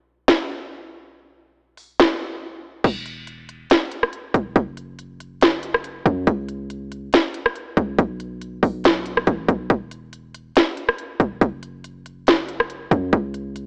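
Atmospheric cloud-rap hip hop with an ethereal, melancholic mood in a half-time feel, heard in a short section cut from a longer piece. An up-front electronic trap kit enters at 0.3 seconds with a hard-clipped kick, sharp snare, crisp hi-hats, rim clicks and crash cymbal, all carrying a vintage 12-bit sampler grit, then briefly breaks at 2.4 seconds. At 2.8 seconds a deep, boomy 808-style bass arrives underneath, its mellow sine tone with a noise layer striking fast and decaying, while light reverb and an AM radio sound colour the whole mix.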